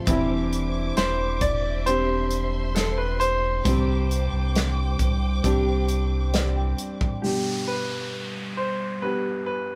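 A straight 4/4 pulse from an up-front acoustic drum kit with a punchy kick, over a deep sine sub bass, carries this heartfelt, hopeful pop ballad, where a soft, thick-felt upright piano accompanies, bowed strings with vibrato and portamento hold lush chords, a picked jumbo steel-string guitar arpeggiates in the background with audible finger squeak, a clear, polished concert grand takes the melody from 1.0 s, and an electronic downlifter enters at 7.2 s before it and the two pianos carry on alone from 7.7 s, all played live in one room with light reverb.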